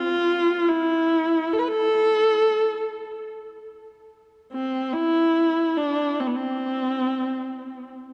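Solemn and mournful, this short excerpt of Caucasian folk music unfolds at a slow 71 BPM in 3/4, though the rubato feel lets the pulse breathe freely. A single bowed viola carries everything as the solo voice, sitting up front with a dark, expressive tone, a smooth top end, and aching vibrato and portamento as it moves between B3 and B4. The piece is in A minor, with the tuning set slightly low at A4 = 438 Hz. A wet church reverb with a 3.5-second tail surrounds the player, and the production as a whole feels shadowy and warm. The phrase falls into two parts, the second beginning at 4.1 s, and the viola sounds until 7.9 s before the fragment is cut from the longer piece.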